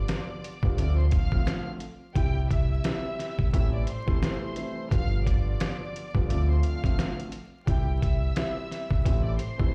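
Vinyl crackle runs over a mix that sounds like a big sound system playing in a bare room, giving this nostalgic, warm boom-bap hip-hop excerpt a dusty, lived-in character. At 87 BPM in 4/4 with a lazy 16th-note swing, a compressed, pitched-down, sampler-style drum kit sits up front, with a thumpy kick, a medium-tuned snare and hi-hat. A deep dub electric bass, round and punchy, joins at 0.6 seconds and holds the low end. Underneath, a woody upright piano with a cassette-tape tint and long sustain plays the accompaniment. A lush, bowed violin section carries the melody with vibrato, a soft attack and a delay trailing behind it. The chords cycle through G7, Dm7, C and Am7 in C major.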